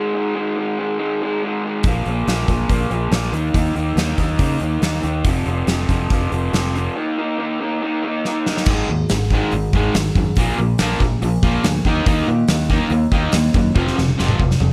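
A raw garage guitar opens alone, its dark, lo-fi overdriven riff sitting up front before the rest of the band crashes in at 1.8 seconds. This is driving, gritty classic rock in a straight four, built on power chords that move from Ab5 through Bb5, Eb5 and F5. A growling fingered electric bass adds punchy, amped grit underneath, while a gated 80s drum kit of kick, snare, hi-hat, toms and crash cymbal sounds polished and airy in a bright stone room, with a punchy kick and bright cymbals. After a break and a drum fill, a crunchy overdriven guitar joins at 8.7 seconds, adding a second riff with a brighter edge as the chord cycle repeats. A small room reverb holds the parts close, and another drum fill carries this excerpt to its cut.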